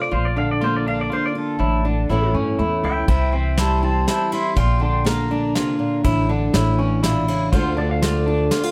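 Intimate and wistful, this short excerpt of acoustic folk for a small band moves in 3/4 at 122 BPM with a straight feel. A clean pedal steel guitar carries the melody throughout as the featured solo voice, played with fingerpicks and slide, its compressed tone blooming through volume swells. Beneath it, a bright fingerpicked steel-string acoustic guitar sits up front with fresh strings and audible finger squeak, while a pizzicato upright bass adds a woody low end. A slightly broken-up electric guitar through a small old amp plays lo-fi arpeggios coloured by harmonic tremolo. Soft brushes on a drum kit with dark cymbals and a punchy kick join at 3.1 seconds, and the chords drift from Bb through Asus4 and A to C before settling on Dm, all captured by close, detailed microphones in light reverb.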